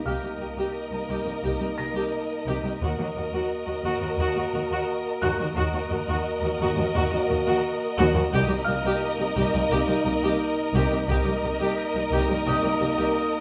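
Cinematic suspense film score at 87 BPM in a straight 4/4, tense and mysterious, cut from a longer piece and lasting about 13 seconds. A dark, intimate cello section and a bowed double bass section share the low bass line, while a mellow French horn section holds sustained chords with light vibrato through the middle. A smooth-topped viola section supplies accompaniment, and two lush violin sections carry the upper lines, one holding a distant, expressive melody on a single high note and the other a soft-attacked second line just beneath it. A felt-muted upright piano adds a soft, high texture in the background. The harmony moves from Cm7 to Ebm at 2.8 seconds and returns to Cm7 at 8.3 seconds, all within a moderate scoring-stage reverb.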